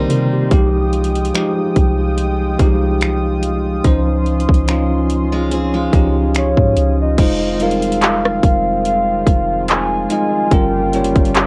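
Sensual and late-night, this contemporary R&B excerpt from a longer piece unfolds over a lightly swung trap groove, with overdriven drums up front: hard-clipped kick, metallic hi-hats, finger snaps, handclaps, rim clicks and a crash cymbal over a deep, round 808-style bass. A bell-like tine electric piano and a smooth, detuned analog pad with chorus carry the minor-seventh and ninth chords, while a bright, full-bodied picked steel-string acoustic guitar plays tape-echoed arpeggios until 7.0 seconds. At 6.4 seconds a soft, octave-layered synth lead enters with a round triangle tone, vibrato, chorus, phaser and tape echo, and the whole piece carries the light reverb and lo-fi character of a home cassette recording.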